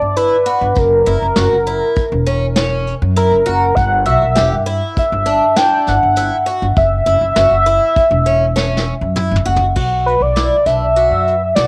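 Intricate and tense, this progressive instrumental fragment of band music moves in an uneven 5/4 with a straight feel and a homespun cassette character. An octave-doubled lead carries the melody up front, its bold, retro sawtooth tone detuned and sustained with vibrato, softened by chorus, tape colour, plate reverb and analog delay into something mellow. Beneath it, a pizzicato upright bass sits forward with a woody, thumpy gut-string sound, while a picked twelve-string acoustic guitar enters at 0.2 seconds with bright, boxy, shimmering arpeggios that carry a swing lilt and their own tape and plate sheen. A vintage brush kit, dark-cymballed and rolled-off on top with a punchy kick, plays a fill from 8.6 seconds that leads into a new section at 9.8 seconds. The harmony shifts between G6, F#7, G5 and F#5 before settling on B minor, all captured in a small room with a modest reverb.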